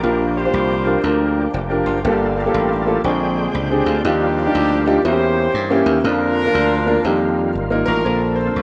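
Gospel at 120 BPM in Bb major, swung and soulful with a hopeful lift, this short excerpt is cut from a longer piece. A mellow, tightly knit horn section carries the melody with light vibrato and a smooth top, while an intimate upright piano with woody tone, audible action noise and long sustain sits up front as the accompaniment. Beneath them a gritty, overdriven tonewheel organ holds thick sustained chords in the background, colored by key click, percussive attack, chorus vibrato and a slow rotary speaker. A bright, punchy slap bass anchors the low end directly and prominently. The harmony moves through rich chords such as Gm9, Ebmaj9 and Edim7 before an F9sus4 resolves to Bbmaj9 at 8.1 seconds, just after a clear concert grand piano joins the melody in the background at 7.9 seconds. Light reverb surrounds a rough home-demo mix.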